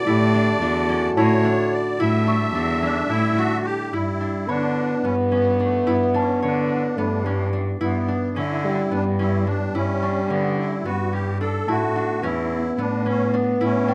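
Set in a straight 7/8 at 217 BPM counted in eighths, this hopeful, shimmering piece of contemporary chamber music in G lydian is cut from a longer work. A musette accordion carries the melody with a reedy, wet-tuned shimmer, while a mellow French horn sings a present, classical-style second line with light vibrato. A concert harp rings out fingerpicked arpeggios, and a single bowed cello, rich and focused with a smooth top and vibrato, sits up front as the bass. A breathing, nasal harmonium holds sustained chords in the background over an A7sus4 until 3.9 seconds, when it drops out and the harmony moves to G. A small celesta joins at 1.2 seconds with delicate, bell-like sparkle from soft felt hammers, its vintage, band-limited tone tucked behind the ensemble, and the passage lifts to Aadd9 at 11.7 seconds, all under a light reverb.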